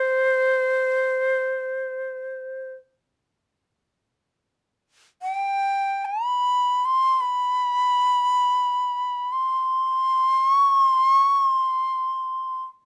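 A bright, airy bamboo shakuhachi plays alone and up front from 0.0 to 12.6 s in this austere, calm Japanese traditional excerpt, its straight, tongued tone carrying a breathy chiff and lifted highs as it moves expressively between C5 and C6 in a dry room.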